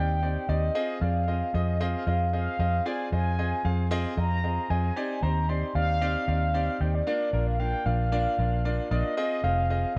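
A dark, round electric bass with a foam-muted, amped tone sits up front in this driving, confident dance-pop piece at 114 BPM in straight 4/4, anchoring the low end in F dorian from the opening second. Above it, a mellow horn-like synth lead carries the melody, its sawtooth tone softened by a soft attack, sustained notes, vibrato, a filter sweep and a chorus effect. A clear, polished baby grand piano fills in the accompaniment with a present sound. The passage is a drop, with harmony moving from Cmadd9/Eb through Fm7 and back, then to Bb before settling on Fm7 at 9.2 seconds. The recording is bathed in light studio reverb and a worn cassette-tape character, with warbly pitch drift giving it an aged sheen. This is a short cut from a longer piece, with all three parts playing throughout.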